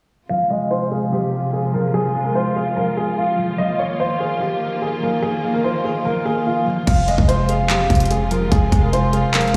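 A dark, mellow baby grand piano carries the melody through an analog delay over ringing concert harp and intimate sul tasto strings, all three filtered under a sweep in a lush hall reverb, as the chords move from Fm to Ebsus2 and back. At 6.9 s, overdriven trap drums with a hard-clipped kick, bright hats, handclaps and crash arrive together with a deep, boomy 808 bass in this menacing, brooding F minor excerpt of half-time trap at 146 BPM.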